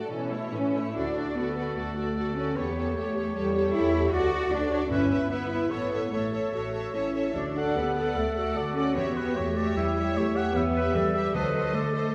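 Cheerful and graceful, this fast, dramatic romantic orchestral movement moves with a rubato feel and is heard as part of a longer piece. The violin section carries the melody with a lush, vibrato-laden tone that sits distant in the mix, while a second violin line plays in the background. Beneath them the viola section adds expressive accompaniment with portamento, and the cello section holds the bass line, focused and up front. At 1.0 seconds an oboe with light vibrato and a vintage colour enters together with a clear, roomy clarinet on second lines, as a smooth, even double bass section deepens the low end. Timpani struck with soft mallets give round, close and dry accents at 4.9 and 11.3 seconds, the last landing on a tense D7b9 chord, and the whole orchestra is bathed in the reverb of a wet scoring stage.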